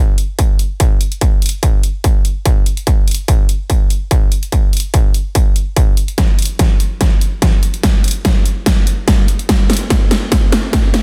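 Heavy wobble dubstep at 145 BPM in 4/4, felt in half-time with a light swing on the sixteenths, this short excerpt from a longer piece carries a heavy, menacing mood. It is built entirely from percussion: an electronic kick drum and a dubstep drum kit of hi-hat and snare, both sitting up front in the mix. The kick is layered and distorted with a tape-warm edge and runs from 0.4 to 10.8 seconds. The kit, heard from 0.2 to 11.0 seconds, brings a huge snare and bright hats, overdriven and re-recorded in a small room. The whole passage acts as a build-up, with a drum fill running from 6.2 seconds to the end. A light reverb surrounds the drums, and the dense, heavily limited modern master keeps the sound packed and loud.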